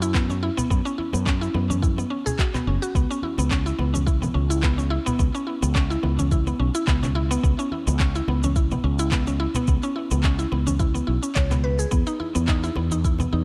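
A woody, round, mallet-like synth pluck opens this earthy, hypnotic organic downtempo cut, spinning bright arpeggios up front with a fast attack, a decaying tail, a noisy FM edge and a shimmer of chorus and tape echo. Beneath it, a fretless electric bass sits up front and direct in the mix, its warm low line carrying the harmony from the start. Electronic shaker and handclaps sit lower in the balance, joined by a soft, produced electronic kick at 0.1 seconds and, at 0.3 seconds, bright, close acoustic congas tucked into the background. The swung sixteenth-note feel gives the groove a loose, rolling sway. The harmony settles on F#7sus4, moves to C#m7 at 3.0 seconds and stays there before turning to E5 near the close. Light reverb and a dark, warm production tone wrap the whole fragment, which is cut from a longer piece.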